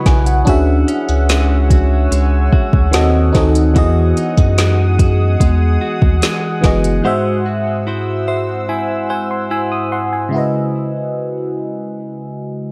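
A dark production with light digital reverb frames this smooth, tender contemporary R&B excerpt at 73 BPM: a glassy, bell-like FM electric piano with chorus and phaser carries the harmony over a warbling, pumping ambient pad, delayed clean guitar arpeggios, a round sub bass and a drum kit with a soft kick and woody snare, until bass and drums stop at 7.0 seconds for a break in which the electric piano plays a fill from 7.9 seconds before the music arrives on a C#m11 chord at 10.3 seconds.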